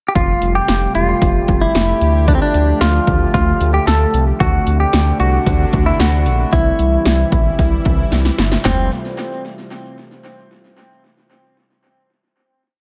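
Bright yet wistful, this short synth-pop piece opens on a brief pickup before a single verse moves through Fadd9, Dm, D7 and C, then returns to Fadd9 as the final chord. A clean, twangy electric guitar, recorded direct and compressed, carries a picked, motif-based melody up front, trailed by tape echo. Beneath it, a resonant, detuned sawtooth pad with a slow attack, filter swell and chorus holds sustained chords, while a round, deep analog bass pulses in eighth notes with a mellow, evolving tone. A punchy, overdriven analog drum machine keeps a straight beat of kick, snare, handclaps, hi-hat and toms, with a short room on the snare, clap and hats, and a drum fill arrives at 8.1 seconds. The echo-heavy mix sits in light reverb, and the closing chord rings on until 10.8 seconds.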